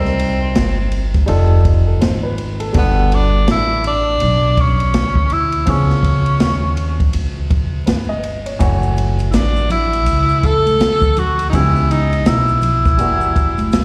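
Swung sixteenths in 4/4 drive this smoky, cool jazz-hop excerpt, where a clear, up-front tenor saxophone with light vibrato, a soft attack and scooped notes carries the melody over grand piano chords, both touched with slapback echo, a woody, thumpy pizzicato upright bass, and a dark, smooth jazz kit of hi-hat, ride, snare and boomy kick, with a soft-handed tube shaker and congas slipping into the background at 8.6 s, the mix heard as a live gig through a venue PA under vinyl crackle.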